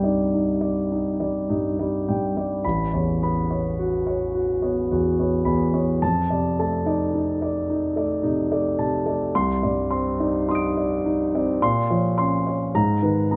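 A warm concert grand piano, up front and close-miked in rich detail with deep bass, an open, long-sustaining tone and light reverb, carries this luminous, hazy impressionist classical fragment alone, moving in a slow, rubato 3/4 through added-ninth and sixth chords from Cmadd9 to A69 and F6, back to Cmadd9 and on to Bbmadd9 and Abmadd9, spanning A1 to D7 before being cut off at 13.4 seconds.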